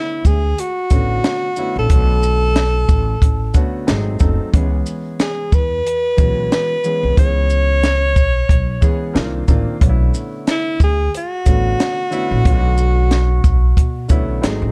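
A breathy alto saxophone, close-miked with a whispered subtone and gentle vibrato, opens alongside a mellow, vintage grand piano in this smoky jazz-hop excerpt in B dorian at 91 BPM, swung on the sixteenths and tuned to A4 = 435 Hz. From 0.2 s, a woody, growly pizzicato upright bass and a compact cocktail kit join, the kit bringing a punchy kick, high-tuned snare, hi-hat and shaker. The sax carries the melody in plate reverb over chords moving from Bm11 through G#7b9, C#m7 and Cm11 back to Bm11, in a dark production with little room sound that keeps the saxophone, bass and drums up front.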